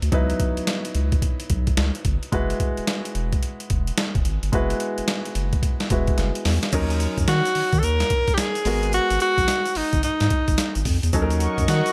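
Confident and slick, this new jack swing R&B excerpt grooves at 109 BPM with a swung sixteenth feel, as a gritty, compressed sampler-style drum kit with a thumpy kick and up-front presence drives a deep, round analog bass and short-sustain baby grand piano comping over C#m11 and F#9sus4. After a drum fill, a grainy shaker slips into the background at 6.7 seconds, a smooth-topped tenor saxophone solo with vibrato takes the lead at 7.3 seconds, and a bold, detuned brassy pad with chorus arrives at 11.1 seconds in a dry, close-sounding mix.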